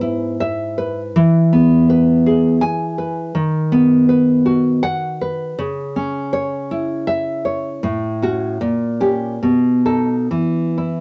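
Warm and nostalgic, this romantic piece for solo classical guitar unfolds in 3/4 with a rubato feel, its tempo drifting between 63 and 83 BPM in E major. A single nylon-string guitar carries everything across the 11-second excerpt, fingerpicked up front with a full-bodied, deep classical tone that spans from G#2 to G#5. The harmony moves from E over G# to E, through B over D# to C# minor, then continues through F# minor over A, A#m6 and B7 before the chords fall away at 10.3 seconds. Light reverb gives the guitar a gentle sense of space. The passage is cut from a longer piece.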